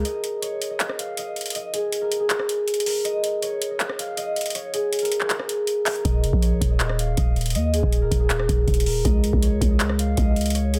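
A ringing, thumb-plucked concert harp carries the melody through low-pass filtering and delay in this menacing, hard-hitting half-time trap excerpt at 160 BPM. A booming analog drum machine with a deep kick, metallic hi-hats, handclaps and rim clicks drives the beat, and a growling, buzzy 808-style bass hits at 0.0 seconds before returning at 6.0 seconds, just as the break draws to a close, all in a dense, heavily limited modern master with digital ambience.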